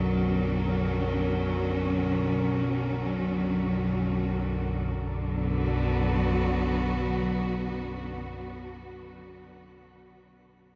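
A lush, bowed cello section and a nasal, evolving analog drone open this ominous dark ambient excerpt together in free time, the cellos holding sustained B minor chords with vibrato and a shimmer reverb while the low sawtooth drone, shaped by pulse-width modulation and chorus, sits up front beneath them. Far in the background, an eerie, metallic inharmonic drone built from FM and ring modulation hovers on a single high pitch with chorus and shimmer reverb until 5.0 seconds. The cellos carry on until 8.7 seconds, and a huge, wet ambient reverb hangs over the whole piece, giving it a cavernous, brooding air in B harmonic minor.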